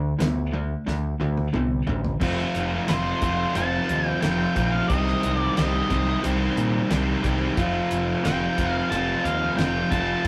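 A rough rehearsal-room recording in a small, reverberant space gives this gritty, swaggering classic rock fragment, cut from a longer piece, a raw feel. A crunchy overdriven guitar riff and a growling, overdriven picked electric bass sit up front, with a biting overdriven guitar riffing in the background, while a damped 70s drum kit with a fat snare, tight kick and dark cymbals plays a fill at 0.9 seconds. At 2.9 seconds a dark octave-fuzz lead guitar enters with a high, distorted melody over the chords of F and C minor.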